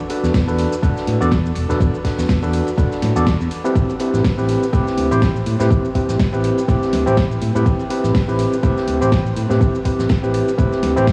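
A swung sixteenth-note groove in four drives this late-night deep house excerpt. A tape-warm electronic kick and a layered house kit with a fat snare, hi-hat and shaker, both re-recorded in a small room, sit over a natural acoustic kit of hi-hat, ride and medium-tuned snare kept in the background, its cymbals and hats high-passed and pumping. Up front, a barky, overdriven tine electric piano heard through a combo amp throws gritty stabs through analog delay and sidechain pumping, a bright, growly fingered electric bass pumps beneath it, the harmony shifts from E7sus4 to Am9 at 3.8 seconds, and the whole mix is soaked in a huge, dreamy reverb with a cassette-tape haze.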